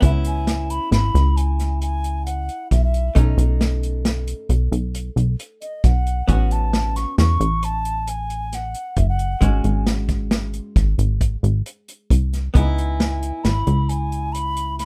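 A mellow, airy clay ocarina carries a tense, brooding melody over a dark, clean, picked hollow-body guitar accompaniment, a punchy, plucky analog bass sitting up front and a tight soul drum kit with hi-hat, kick and snare, all moving at 134 BPM in a straight 7/4 through C#m7, B7, A6 and G#7sus4 in this dry, rough home-demo cut of a progressive instrumental band piece in C# minor.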